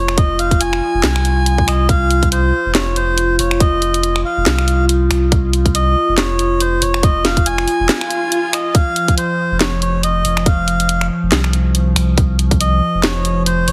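Deep dubstep in F minor at 140 BPM with a half-time, swung feel, cavernous and meditative, cut from a longer piece. A reedy, breathy melodica carries the melody through a dub echo over sustained chords from a dark, detuned analog pad with subtle chorus, while a thick, saturated sub bass sits up front beneath a tight electronic kick and a garage kit of finger snaps, handclaps, hi-hat and a cracking snare. An electronic swell enters at 8.0 seconds, and the whole mix carries light reverb and a heavily compressed radio sound.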